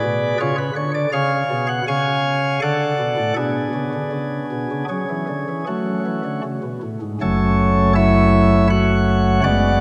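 A solo chamber organ opens this short, grave excerpt with light, bright flute stops, their chiff audible up front as a solemn chorale unfolds in F# minor at a rubato 80 BPM in 3/4. The harmony moves from C# through D and G#dim/B before settling on F# minor at 4.9 seconds, with the organ ranging from deep bass notes to sparkling upper flutes. A long, wet church reverb surrounds the instrument, and a new section begins at 7.2 seconds before the recording breaks off at 9.8 seconds.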